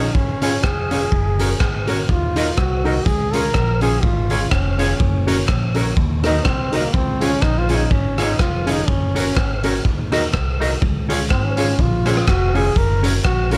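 A bright, close-miked trombone with vibrato and slapback echo carries a bouncy, cheerful ska melody in Db major at 124 BPM, over a dark, scooped semi-hollow electric guitar, boxy, slightly detuned upright piano stabs with audible action noise in the background, and a woody, thumpy pizzicato upright bass, while a gritty, muffled garage drum kit with punchy kick, hi-hat and rim click sits up front from 0.1 seconds and very quiet, crisp group handclaps join at 0.6 seconds, all in light reverb through this short cut from a longer piece.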